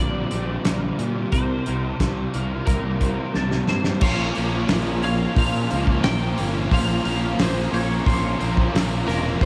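A loose indie drum kit with a fat snare, tight kick and rolled-off top sits up front from 0.3 seconds, fills at 3.4 seconds and anchors this blissful, hazy shoegaze and dream pop excerpt alongside a dark, round fuzz bass with overdrive, a compressed twelve-string electric guitar melody drenched in analog chorus and tape echo, twangy clean arpeggios with ensemble chorus, a crunchy overdriven riff with reverse reverb, and a fuzz guitar riff with distortion and chorus, all sounding from the start, and, from 4.0 seconds, a bright, double-tracked distorted guitar riff, all captured on cassette in a small room at home.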